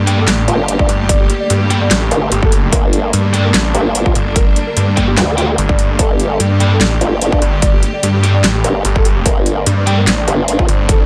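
A half-time groove in 4/4 with a light swing on the sixteenths drives this aggressive, menacing heavy wobble dubstep excerpt, which rests on a single minor chord throughout. A punchy, overdriven electronic kick arrives at 0.8 seconds and sits loudest and up front, joined by a layered dubstep kit with a huge snare, metallic hi-hats, handclaps and a tape-warm tone. Two basses dominate the low end: a snarling, growling saw bass, bright and distorted with detuned unison voices, and a formant-sweep wobble bass entering at 0.5 seconds, saturated and thickened with chorus and overdrive. A thick, double-tracked fuzz guitar adds picked, distorted stabs, while a dark, mellow, boxy grand piano carries the melody with long sustain and dub echo. Far behind them, a lush symphonic string section holds intense, bowed chords with vibrato that pump against the beat, all in a dense, loud mix with little reverb.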